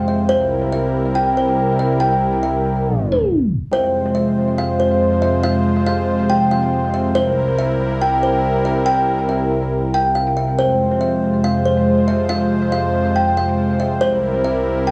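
Melancholic and hazy, this half-time hip hop cut from a longer piece moves at 140 BPM in F harmonic minor, alternating between C7 and Fm chords. A smooth, detuned sawtooth pad with a slow attack and chorus sits up front holding sustained chords, while a woody, hollow kalimba carries the melody with ringing thumb plucks, softened by a low-pass filter and trailed by dub echo. The echo-heavy mix carries light studio reverb, and a tape stop from 2.9 to 3.7 seconds marks the turn into the longer second section.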